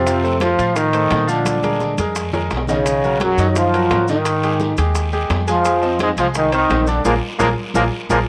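A straight 4/4 salsa groove carries this short, sunny and joyful clip cut from a longer piece. It is built on ringing metal-shell timbales and thin-skinned congas sitting in the background, along with very quiet, tight, high-tuned bongos played with soft hands, and joined by raspy, distant guiro and grainy maracas. An up-front, tight trombone section in a bright pop style carries the melody, set against a brilliant grand piano accompaniment with long sustain and audible action noise that gives it an intimate presence. Underneath, a woody pizzicato upright bass on steel strings anchors the low end. Drum fills arrive at 1.5 seconds and again at 7.1 seconds, where the whole band hits a shared accent through to the close. The harmony moves between rich seventh and extended chords and bare power-chord shapes, ending on a power chord, and a light, small-room reverb keeps the sound close and lively.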